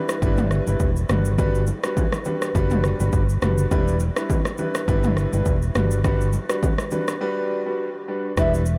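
A clear grand piano with a subtle chorus opens this sultry, mellow afrobeats excerpt at 103 BPM, quickly joined by a punchy, layered deep house kit of kick, rim click, shaker and toms, a dark, round fingered electric bass up front, and ringing, band-limited congas in the background, all swaying over Em7 and Gmaj7 in light small-room reverb until a break at 7.2 seconds, after which a distant, airy flute touches a single note at 8.4 seconds.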